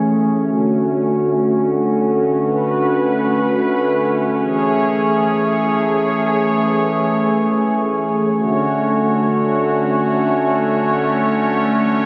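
An analog pad carries this blissful, floating hip hop fragment entirely by itself, its detuned, warbling tone sitting up front with a soft attack and long sustained notes spanning D3 to C#5. Chorus and delay add a vintage shimmer, blending sawtooth and wave-folded sine colors into a smooth haze. The music moves in free time, tuned slightly low to A4 = 439 Hz, drifting from Dmaj7 to Amaj7 at 4.4 seconds before a new passage returns to Dmaj7 at 8.3 seconds. A huge ambient reverb, captured on a phone in the room and then given studio reverb and compression, lets each chord hang in the air.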